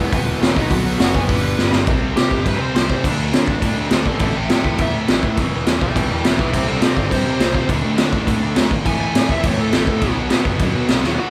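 A straight, driving punk beat in common time comes from a raw garage drum kit placed up front, its boomy kick, high-tuned snare, hi-hat and crash sounding gritty and saturated with a rolled-off top. This rowdy, upbeat clip, cut from a longer piece, sits in a small room with light reverb, like a band playing live together. Underneath, a fuzz picked electric bass growls with overdrive, while three rhythm guitars play riffs in the low-to-middle register. A tight distorted guitar adds bright bite in the background, and a distorted electric guitar and a scooped, double-tracked overdriven electric guitar sit very quiet beneath it. A dark, smooth overdriven lead guitar carries the melody from the start, and after a drum fill at 1.6 seconds it launches into a solo at 1.9 seconds that runs to the end, reaching as high as B5, before another fill closes things at 11.0 seconds.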